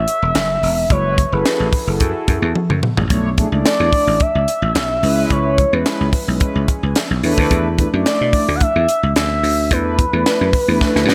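A lush hall reverb gives this slick, danceable cut of early-eighties boogie funk a big arena sound, moving at 109 BPM in F# minor over F#m9, Bm11, C#m7 and E7sus4. A dry, growly thumbed slap bass and a tight acoustic funk kit with a high-tuned snare, handclaps and toms sit up front, with drum fills at 2.6 and 10.8 seconds, while mellow sawtooth synth brass with a soft attack and filter sweep enters at 0.9 seconds, softer than the rest. On top, an expressive, warbling portamento lead with a vintage, wave-folded tone, vibrato, chorus and slapback echo carries the melody.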